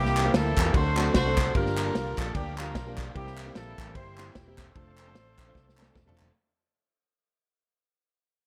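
Hopeful and jubilant, this short uptempo gospel excerpt in F major swings at 150 BPM in 4/4, fading out across its full length as the chords move from C7 through D7 and Gm7 back to C7 before settling on F6. An up-front, jazz-style horn section carries the melody over a fingered electric bass with an amped tone, a distant soul drum kit with dark cymbals and a tight kick, and hollow group handclaps set in a large room. A clear concert grand piano with deep bass sits in the background, while a very quiet, bright tonewheel organ holds sustained chords with key click and a fast rotary speaker, and the drums close on a fill at 5.6 seconds.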